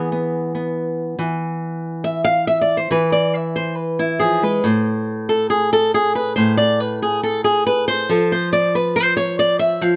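The recording has an up-front sound with a light reverb around a single flamenco guitar, bright with fresh strings. This passionate, fiery flamenco excerpt moves at 139 BPM in a straight 4/4, set in E phrygian dominant with tuning at A4 = 441 Hz. The fingerpicked acoustic guitar carries the whole piece alone, ranging from A2 up to F5. After a brief opening on an E chord, the nylon-string solo takes over at 1.2 seconds and runs to the end at 10.0 seconds. The harmony drops away to unaccompanied lines at 4.6 seconds before landing on an F5 chord at 8.1 seconds, cut from a longer performance.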